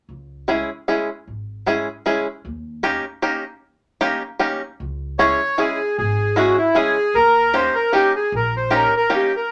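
Whirling and nostalgic, this musette waltz excerpt in 3/4 opens with a woody, pizzicato upright bass and a twangy, fingerpicked bluegrass banjo over C#m and D#7 chords in a small, moderately reverberant room, before an up-front, reedy, smooth bandoneon takes the melody from 5.2 seconds until the cut at 9.5 seconds.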